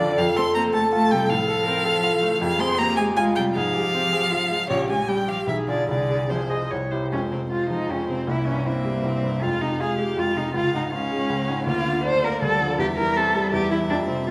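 Spirited and graceful, this quick classical-period movement for piano quartet moves in 3/4 at 159 BPM in F minor with a rubato feel. A rich, vibrato-laden violin carries the melody up front, while an expressive cello sings a second line with soft attacks and portamento, and a smooth, even viola and a clear, short-sustained baby grand piano supply the accompaniment. A wet recital hall reverb surrounds the quartet, and a second section begins at 7.1 seconds in this passage cut from a longer piece.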